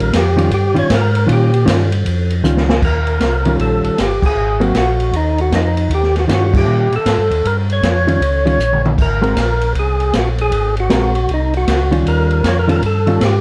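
A worn, warbling old cassette tape sound with a slight pitch drift colors this soul jazz organ trio fragment, set in a moderate club reverb. At a swinging 156 BPM in 4/4 with a soulful Eb mixolydian feel, a fat, lightly overdriven tonewheel organ with percussive third-harmonic attack, vibrato and a slow rotary speaker carries the melody, opening with a short solo that runs to 2.8 seconds. Beneath it, a second tonewheel organ supplies a round, mellow bass line with key click and its own slow rotary, sitting up front alongside the lead. A clean, compressed electric hollow-body jazz guitar with a shadowy tone fills in the accompaniment. The acoustic drum kit sounds distant and roomy, with dark cymbals, a medium-tuned snare and a boomy kick, adding a fill at 8.6 seconds, while the whole band hits accents at 4.2 and 6.5 seconds. The harmony moves from Eb9 to Ab7sus2, back to Eb9, then to Ab9 before settling back on Eb9.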